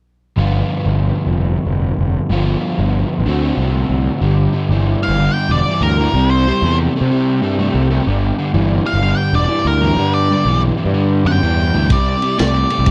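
Driving and raunchy, this short cut from a longer blues rock and southern rock power-trio piece swings in 4/4. An overdriven, double-tracked semi-hollow guitar plays the riff from the start alongside a fuzzed, picked electric bass, both sitting up front, as the harmony moves from G7 to D7 before settling on G. At 4.2 seconds a thick, gritty tonewheel organ slips in very low in the mix with sustained chords through a slow rotary speaker, its key click and chorus vibrato adding body, while the progression turns between G and C. From 5.0 seconds a dark octave-fuzz lead guitar carries the melody with wah and distortion. A vintage drum kit arrives only at 11.9 seconds with a punchy kick, muffled dark ride cymbal and medium-tuned snare, sounding saturated and rolled-off. The whole take has a dry, close 1970s studio feel in a small room, with a faint mains hum underneath.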